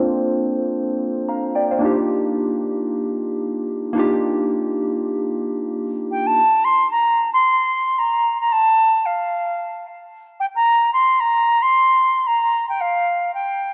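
Soulful amapiano excerpt at 112 BPM with a swung 16th-note feel, where round, detuned analog keys with chorus and a filter sweep play Bbmaj7 and Ebmaj9 chords until 6.4 seconds, a pure, expressive concert flute with vibrato and delay enters at 6.1 seconds to carry the melody through the drop, and a lush hall reverb and worn, warbling cassette tape drift color the whole recording.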